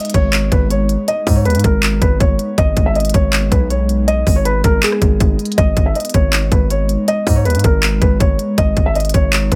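Brooding and dark, this short trap cut from a longer hip hop piece moves at 160 BPM in a half-time feel, sitting on a single G# minor chord throughout its 9.6 seconds. A felt-muted upright piano carries the melody between G#4 and E5, its soft, intimate tone dulled further by a low-pass filter, with the action noise of the instrument audible. Beneath it, a glassy FM pad holds sustained chords with a slow attack and long release, given an ethereal sheen by ensemble chorus and its own built-in reverb. The trap drum kit sits up front with a hard-clipped kick, crisp hi-hats, handclaps and rim clicks. From 0.1 seconds a distorted 808-style bass spanning G#1 to G#2 hits with a fast attack and saturated, aggressive weight, its sine core roughened by a noise layer as each note decays. The overall sound is dry, with little room reverb.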